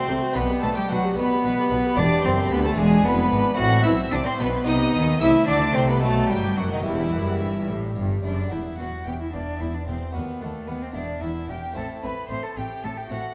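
Brilliant and lively, this excerpt from a baroque-style concerto movement moves at 74 dotted-quarter beats per minute in a straight 6/8, set in E minor. A solo cello carries the melody up front with a nasal, gut-string voice, joined in the melody by a chamber violin section with light vibrato that sits high above it, while a darker violin section plays a second line. A reedy viola section and an airy French-style harpsichord with two sets of strings fill in the accompaniment. The bass is held by a rich, distant double bass section and a cello section sitting in the background. The harmony moves through E minor, A minor and B chords; at 8.5 seconds the music passes into a new section that returns to E minor at 11.0 seconds. A moderate concert hall reverb gives the period-style strings an open, resonant space.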